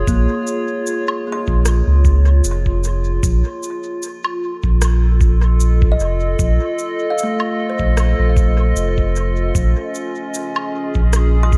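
Ambient dub at 76 BPM in Bb minor, meditative and spacious, this piece cut from a longer work sways on a light 16th-note swing as its harmony moves from Bbm7 to F7 and back. A warbling, detuned, lo-fi pad holds mellow sustained chords with chorus and its own reverb, while a woody, ringing kalimba traces soft plucked arpeggios through delay, and a round, deep sine sub bass with tube saturation sits up front. From 0.1 s a muffled, thumpy, pitched-down electronic kick arrives alongside electronic cabasa, woodblock and rim click, whose small room ambience and dub echo add to the light reverb across the mix.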